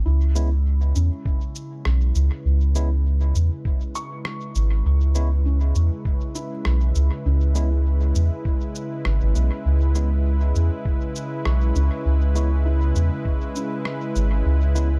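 A deep, round dub sub bass sits up front, holding low sustained notes with a quick attack beneath a meditative, spacious stretch of ambient dub at 100 BPM in C# minor. A smooth, detuned analog pad with chorus sustains a single C#m7 chord throughout, while a dark, felt-muted upright piano plays quiet arpeggios in the background, its notes trailing into dub echo. A clean tine electric piano adds stabs that also repeat through echo. The rhythm rides a gentle 16th-note swing: a pitched-down electronic shaker and rim click ticks in a small room with echo, and a muffled, thumpy kick drum enters at 1.3 s and drops out at 13.4 s. The mix carries little reverb and leans heavily on echo, leaving plenty of open space around the parts in this section cut from a longer piece.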